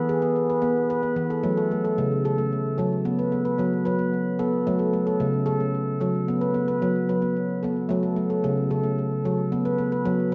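Bathed in a wet recital-hall reverb, this gentle, meditative world piece, cut from a longer work, features a solo handpan at 74 BPM in 6/8, its ringing, bright stainless-steel voice placed up front with sharp finger strokes and delay, moving between F# minor and B5 chords in a tuning of A4 = 435 Hz.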